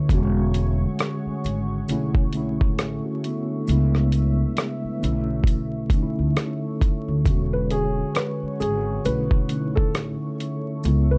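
A mellow tine electric piano, a woody pizzicato upright bass and a deep, dark, chorused ambient pad open this melancholic, hazy lo-fi hip hop excerpt in B dorian at 67 BPM, moving through E13, Bm11 and C#m7 chords. From 0.1 seconds a compressed, muffled sampler-style kit with a thumpy kick, hi-hat and rim click swings the 16ths, with distant maracas in the background. A soft, boxy felt-muted upright piano, its action noise audible, sounds briefly at the very start and returns to carry the melody from 7.5 seconds, all set in a dark production with light reverb and vinyl crackle.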